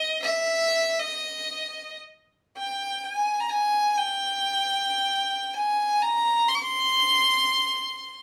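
A single bowed violin opens this short Arabic passage and carries it from 0.0 to 8.2 seconds, playing unaccompanied in free time. The music sits in maqam saba on C, and its mood is stately yet festive. The violin's tone is rich and earthy, with a light vibrato, and it sits up front in the sound while keeping a slightly distant quality. Its line stays in a high register, spanning Eb5 to D6-49c. A studio reverb of 0.6 seconds gives the performance a wet sense of space, capturing the feel of players together in one room, and the recording comes across as a brief section lifted from a longer piece.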